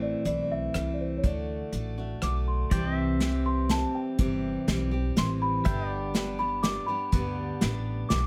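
A straight 3/4 feel at 122 BPM sets an easygoing, sunny honky-tonk and classic country mood in this brief cut from a longer piece. An unplugged drum kit enters at 0.3 seconds and sits up front in a small, airy room, played with bundle sticks on hi-hat, rim click, a medium-tuned snare and a punchy kick. A pizzicato upright bass with steel strings gives a woody, thumpy low end, while a picked dreadnought acoustic guitar rings bright and full-bodied beside the drums. On top, a celesta carries the melody with a bell-like, delicate sweetness from soft felt hammers in a boxy little space. At 2.7 seconds the harmony moves from Am and D to C and G, and a clean, compressed pedal steel guitar joins with fingerpicked, sliding sustained chords and volume swells, tucked softly behind the other parts under light reverb and close, detailed miking.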